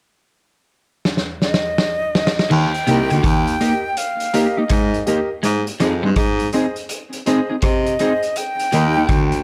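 A bright, punchy baritone saxophone carries the bass line up front in this sunny, uplifting roots reggae excerpt, arriving at 2.5 seconds alongside a slightly broken-up, picked electric guitar riff thickened by ensemble chorus. A vintage drum kit with dark cymbals and a medium-tuned snare, recorded in a small, pumping room, enters with a fill at 1.1 seconds, and a breathy concert flute with vibrato and tape echo sings the melody from 1.4 seconds. A dark, fingered clean guitar adds swung accompaniment through analog chorus and tape echo, while a woody upright piano supplies stabs, all under light studio reverb.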